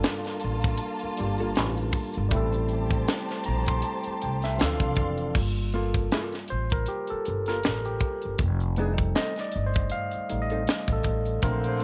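A barky, lightly overdriven tine electric piano opens this smooth, late-night neo-soul R&B excerpt over lush bowed strings and a tight funk kit with a high-tuned snare. A woody, growly upright bass joins at 0.4 s, and a dark, clean hollow-body jazz guitar soon adds a second line over a swung groove. The piano moves from a fill into a solo at 5.4 s as the strings fall away. The strings return alongside distant horn stabs at 11.4 s, all in a small room.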